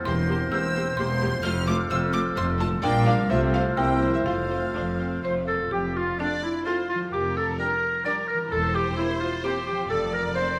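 Set in a moderate recital hall reverb, this magical, mischievous and whimsical orchestral film cue in 3/4 has a woody, buzzing marimba with hard mallets carrying the melody alongside a lush violin section, while a clear second violin section, a bright clarinet, a mellow flute ensemble and an oboe weave second lines, a distant viola section and a dark bassoon, which stops at 5.5 s, fill the accompaniment, cello and double bass sections anchor the bass, a French horn section holds sustained chords from 0.5 s, and a ringing concert harp spins arpeggios underneath.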